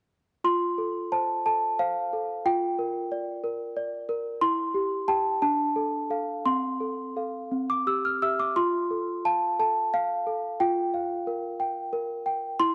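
In a rubato 6/8 lilt at 60 dotted-quarter beats per minute, this dreamy, innocent classical lullaby fragment in F major, tuned to A4 = 441 Hz, features a small solo celesta from 0.4 to 12.7 seconds, its sweet, bell-like tone from hard felt hammers sounding up front and bright within a moderate plate reverb as gentle harmonies drift from F through Gm7/F, Dm and C before returning home.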